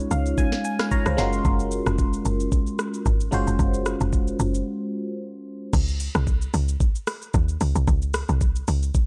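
A barking FM electric piano with a phaser accompanies this soulful amapiano excerpt at 112 BPM, its biting, full-bodied chords moving from Dbmaj9 to Gbmaj9 over a lightly swung 4/4 groove, with an opening fill and a break at 4.7 seconds before it stops at 5.8 seconds. Beneath it, a woody, punchy log drum bass and a smooth R&B kit carry the drop from 5.7 seconds. The kit has a knocking kick, sharp snare, metallic hats, rim click, shaker and crash, roughened by vintage 12-bit sampler grit, all set in a dark production with light reverb.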